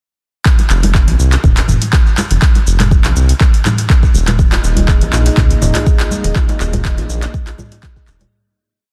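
This afro house piece moves at 122 BPM in F minor with a hypnotic, driving feel and a light swing on the sixteenths, sitting in a drop from 0.5 seconds until the end, with a fade-out beginning at 5.7 seconds. An overdriven electronic kick sits up front with a deep, four-on-the-floor pulse, while a programmed afro-pop kit adds metallic closed hats, shaker, low tom and handclaps on the backbeat, both sounding re-recorded in a small room. Ringing congas played with soft hands interlock in the background, and from 4.5 seconds a medium-tuned djembe joins with a hand-drum cross rhythm of tones, slaps and bass strokes. A round, mellow analog bass blending sawtooth, sine and triangle waves carries a syncopated riff with sidechain pumping. At 4.6 seconds a dark, moody pad of detuned square and sawtooth waves with a sub octave, ring modulation and chorus enters with a slow attack over an Ebsus4 chord, also shaped by sidechain pumping. 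The master is dense and heavily limited, with audible lossy compression artefacts.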